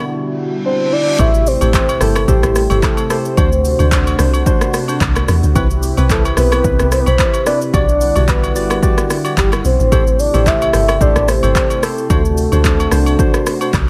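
A soft, octave-layered synth lead carries the melody in this deep, soulful amapiano excerpt, its round tone shaded with chorus, tremolo, vibrato and digital delay over a smooth, detuned analog pad that pumps with sidechain compression. The opening pairs the pad with a dark, boxy concert grand piano and a reverse cymbal, then the drop at 1.2 seconds brings in a deep, percussive FM log drum bass, hollow wave-folded organ stabs with chorus and delay, and an up-front deep house kit of punchy kick, smooth hi-hats, handclaps, rim click and shaker. Quiet agogo bells and woodblock add close, dry colour to the swung groove as the chords move from Am7 through D7, Cmaj7 and Em9 in a dry, intimate mix.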